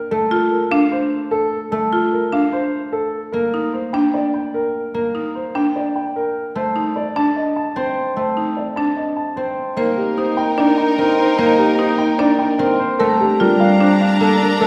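A dark concert grand piano carries the melody up front in this minimalist classical pattern piece, its mellow, boxy tone reaching into deep bass with a long sustain. Beneath it, a concert harp sits forward in a low, fingerpicked, ringing accompaniment, while a buzzing marimba with medium hard mallets spins woody, bright, airy arpeggios from its dry hardwood bars. At 9.8 seconds a distant, roomy clarinet adds a second line in classical style, and a lush symphonic string section enters with smooth, even, bowed chords full of vibrato. The harmony moves through Bbmaj7, a rootless Cm7 and Adim before arriving at Bbmaj9, giving the music an urgent yet hypnotic pull. A reverberant recital hall surrounds the ensemble, and the passage is cut from a longer piece.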